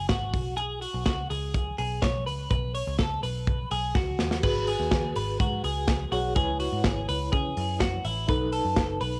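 A bright, twangy twelve-string electric guitar sits up front, picking clean, compressed arpeggios through a cassette-tape haze in this nostalgic slice of jangly indie pop, cut from a longer piece in a straight 4/4. Beneath it, a dark, round muted electric bass adds a punchy, amped low end, while an acoustic drum kit with a tight kick, medium-tuned snare, hi-hat and crash plays close and forward, carrying the same tape color as the guitar. A drum fill from 4.0 to 4.4 seconds leads into a new section, where a reedy, mellow electric piano joins with fast tremolo, sounding through its built-in speakers and also tinted by tape. The harmony opens on Bsus2 and then moves through G#m7, C#m7 and B7. Light reverb and the home-recorded cassette sound give the whole clip a bright yet wistful, lo-fi intimacy.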